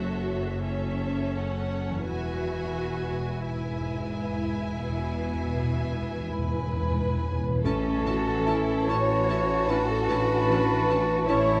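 Set in a reverberant concert hall with a dark production, this serene, lyrical classical excerpt in A major drifts in a rubato 12/8 at roughly 39-51 BPM, as a focused chamber violin section carries the melody over a lush symphonic violin second line, smooth violas, bright cellos, an up-front double bass section and very quiet ringing harp arpeggios, with close, dry timpani entering at 2.1 s, airy flute, soft clarinet and distant French horn chords joining at 6.3 s, and a mellow bassoon, vintage-toned oboe, very quiet trombones and warm trumpet stabs arriving around 7.7 s as the harmony moves from F#m7 through E to A.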